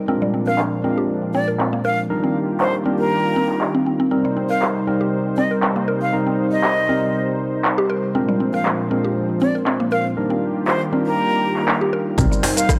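A lightly swung 4/4 groove drives this earthy afro house excerpt, carried by an up-front, overdriven deep house kit of metallic hats, handclaps, rim click and shaker, with the snare, hats and percussion filtered dark and set in studio reverb. A smooth, detuned analog pad holds sustained chords with chorus and sidechain pumping, while a worn, slightly out-of-tune tine electric piano adds gritty, lo-fi stabs through analog delay. A woody, mallet-like synth pluck spins arpeggios colored by chorus, phaser and delay, and a breathy, bright jazz flute, close-miked with expressive vibrato, sings the melody from 0.5 s. Only at 12.2 s do a punchy, overdriven electronic kick, a round, deep analog bass and a hard-handed djembe with metal rattles drop in. The harmony moves through Bb7, Ebmaj7 and Cm7, and the dry, gritty hardware sound keeps the mood warm and grounded.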